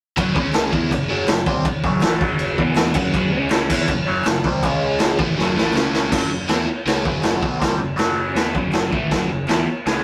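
Swaggering and raw, this garage rock excerpt charges along at 161 BPM in a straight 4/4, built on a bright, double-tracked overdriven guitar riff with a phaser sitting up front alongside a gritty, saturated drum kit whose boomy kick and medium-tuned snare crash through a small room. A growling, punchy picked bass with overdrive sits in the background, while very quiet, crisp group handclaps add a vintage, band-limited snap. A drum fill at 5.4 seconds pushes the song into a new section at 6.1 seconds, all captured in a rough rehearsal-room sound with moderate reverb.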